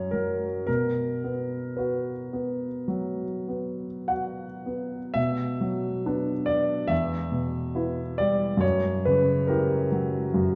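Rubato in 4/4 at a slow 46 to 72 BPM, this dreamy, nostalgic romantic nocturne in B minor, cut from a longer piece, sets a natural, up-front baby grand piano alone in a wet recital hall with a dark, warm production, opening on F#5 and moving at 5.2 seconds into a new section that passes through Bm, Em and an F#7b9 at 8.6 seconds.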